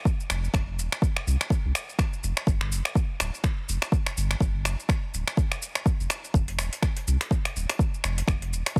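A deep, overdriven electronic kick sits up front in this hypnotic, spiritual afro house clip, cut from a longer piece, with a swung sixteenth feel. Beside it, a layered, overdriven deep house kit adds finger snaps, a shaker and metallic hi-hats, while a round sine sub bass with a fast attack sustains beneath, tube-saturated and pumping against the sidechain. The sound is dry and heavily compressed, with a radio-like multiband squeeze.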